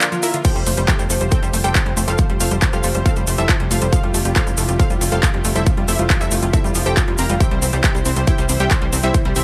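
A punchy, overdriven electronic kick lands up front at 0.4 s in this euphoric uplifting trance excerpt at 138 BPM in F major, joined at 0.6 s by a nasal, driving sawtooth sequencer bass, while a lush unison pluck with sidechain pumping and digital delay carries the melody over a very quiet, catchy detuned lead, an evolving supersaw pad holds background chords, a tight sequenced synth with chorus and 12-bit sampler grit spins arpeggios, a big-room drum kit adds metallic hats, claps and crash, and a grainy, close cabasa sits in the background, all over Fadd9 moving to C at 7.4 s.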